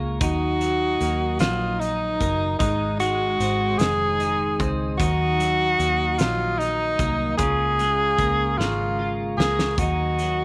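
A light reverb and small-room ambience frame this melancholic, dramatic six-eight pop ballad, heard as a short cut from a longer piece. A breathy tenor saxophone carries the melody up front from 0.2 seconds, jazz-styled with vibrato, scooped notes and a smooth top. Beneath it, a double-tracked twelve-string electric guitar picks bright, twangy, compressed accompaniment, while a vintage muted fingered electric bass supplies a dark, round, foam-muted low end. A mellow tonewheel organ holds soft, flute-like sustained chords in the background, its key click and slow rotary speaker adding gentle motion. The loose indie drum kit, with a fat snare, punchy kick, hi-hat and a pumping room sound, plays a fill from 8.6 seconds as the minor-leaning progression comes back around to Ebm.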